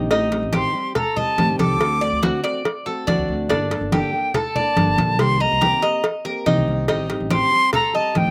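Warm and danceable, this 142 BPM Cuban son and guajira excerpt moves through Am7b5, D7, Gmadd9 and Cm7 as a fingerpicked classical nylon-string guitar and a metallic, double-strung tres playing arpeggios, both touched with slapback echo, ride over woody, dark pizzicato upright bass, thick-skinned congas and a tight, high-tuned cowbell with its own slapback, until an airy, bright concert flute with expressive vibrato enters up front at 0.5 seconds to carry the melody in a dry, open-air sound.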